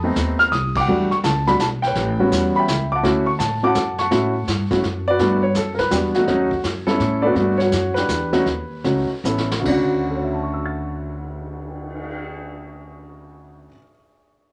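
An intimate, up-front grand piano, its action noise audible, opens this playful, sophisticated jazz trio excerpt in a swinging 3/4 alongside a woody pizzicato upright bass, with a vintage brush kit of dark cymbals and a punchy kick entering at 0.2 seconds; the band hits an accent early, the tempo slows from 7.4 seconds, and a brushed drum fill leads into a settled Dmaj7 at 9.7 seconds, all in a snug club reverb.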